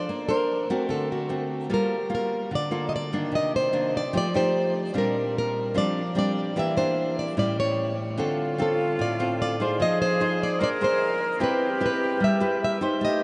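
This sunny, breezy bossa nova excerpt moves at 148 BPM in G minor, with two up-front, fingerpicked nylon-string guitars: one carries a small, fresh-stringed melody while the other plays classical-style accompaniment through rich chords such as Bbmaj9, Gm9 and Cm9. At 8.2 seconds a silver concert flute joins with an airy second line, its vibrato and soft attack adding a gentle glow. Everything sits in a vast, echoing space with a long, huge reverb and softened highs.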